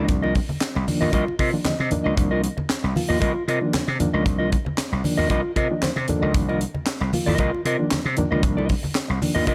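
A gritty, overdriven slap bass sits up front in this cool, driving funk clip cut from a longer piece, holding a single Cm11 chord with a crisp fusion drum kit of punchy kick, high-tuned snare, hi-hat and handclaps, plus low-tuned congas struck with hard hands. A reedy electric piano with fast tremolo plays stabs and adds fills at 1.4 and 5.3 seconds, while a dark, clean, fingered electric guitar supplies accompaniment. The drums sound polished, and everything is set in a small room ambience.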